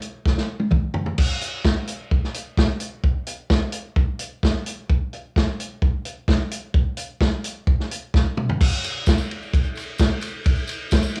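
Jangly and carefree, this short rock clip in a straight 4/4 puts a vintage acoustic drum kit up front, with a punchy kick, medium-tuned snare, hi-hat, ride, crash and toms given a rolled-off, cassette-tape character in a small home room, opening with a fill at 0.3 seconds and rolling through another at 8.1 seconds before a jingly tambourine joins in the background from 8.6 seconds.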